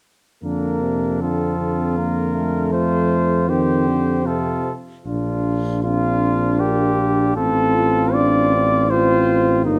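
Stately and triumphant, this classical brass quintet moves in a rubato 3/4 at 78 BPM in Bb major, tuned to A4 = 435 Hz, with a mellow cornet carrying the melody up front over an equally forward tuba bass. A warm trumpet sings a second line, while the euphonium, sharing the cornet's light vibrato, and a soft-attacked French horn supply accompaniment from the background. Close, detailed microphones capture the group in a moderate recital hall reverb, and the passage, cut from a longer piece, turns to a contrasting second section at 5.1 seconds.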